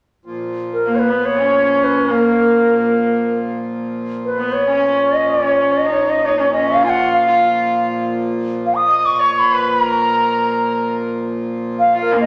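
A large, wet studio reverb bathes this free-time Indian classical passage in raga Bhairavi on Bb, cut from a longer piece and steeped in longing and introspection. A breathing, hand-pumped harmonium drone enters at 0.3 seconds, followed at 0.7 seconds by the airy bamboo tone of an up-front bansuri carrying the melody with tongued notes and vibrato. At 0.9 seconds a bowed sarangi adds an earthy, nasal second line, gliding between notes over the shimmer of its sympathetic strings.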